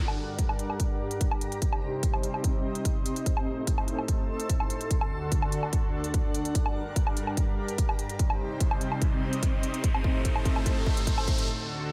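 Heavy wobble dubstep in a chaotic, aggressive half-time build-up, cut from a longer piece, where a thick, warbling, detuned sawtooth unison pad with chorus sustains the chords and a blurred, evolving granular sine pad drifts above it, both pumping under sidechain, while crisp electronic woodblock and hi-hats and a punchy, up-front, tape-tinged electronic kick play beneath a synth-pad filter sweep and launch into a drum fill at 6.5 seconds, an electronic riser enters at 8.4 seconds, and a brief break arrives at 11.5 seconds inside a digital ambience.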